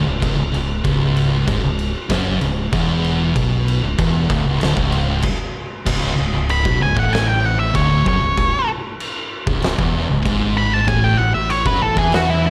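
Stoner and doom metal with a hypnotic, sludgy feel: two thick fuzz guitars grind out the riff, one in the background and one very quiet, over a growly, bright fingered bass and an up-front, oversized low-tuned drum kit with a boomy kick, fat snare and dark cymbals in a stone room, until a stop at 5.2 seconds gives way at 5.9 seconds to a dark octave-fuzz lead guitar solo carried up front.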